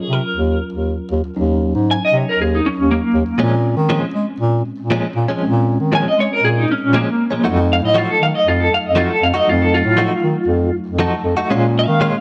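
Bathed in a moderate echo-chamber reverb, this brooding, mournful blues excerpt in Bb minor moves at 118 BPM: a twangy, slightly broken-up electric guitar through a small old amp carries the melody up front with tremolo; a breathy, close-miked bass clarinet with vibrato holds down the bass; a mellow tine electric piano plays through its built-in speakers and adds a brief fill at 10.7 s; and a compressed, direct-recorded clean guitar enters at 3.4 s with tremolo-laden stabs over chords moving from Ebm7 through Bbm7 to F7b9.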